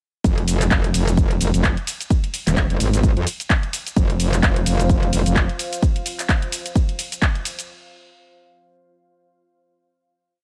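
A four-on-the-floor kick, punchy and overdriven, drives this swaggering, bouncy bass house piece at 129 BPM in F minor, with a house kit of bright programmed hats, cabasa, handclaps and ride carrying a backbeat with a 16th-note swing across the whole drop. Up front, a metallic, distorted wobble bass with chorus, tube saturation and sidechain pumping plays aggressive modulated phrases with changing wobble speed until 5.5 seconds. From 4.3 seconds, a deep, moody sawtooth pad with detuned unison, a sub octave and built-in reverb holds mellow sustained chords in a digital ambience.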